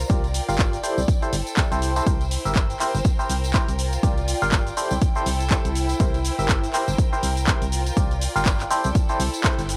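Dry and gritty, this hardware-recorded cut from a longer piece is a joyful, euphoric slice of piano house at 122 BPM in 4/4, with a 16th-note swing in C mixolydian. A punchy, overdriven electronic kick sits up front beside a round, dark FM bass that pumps against it, while a layered house kit with bright hats, handclaps and shaker adds its own overdriven edge. A tambourine rings quietly in the background with a small-room acoustic character. The barking FM electric piano carries the riff from 0.1 s, its biting, percussive tone colored by chorus, phaser, tremolo, a low-pass filter and analog delay. Alongside it, a lush bowed string section with vibrato pumps as the chords cycle through Gm7/C, Am7 and C7, until the band lands an accent at 9.4 s.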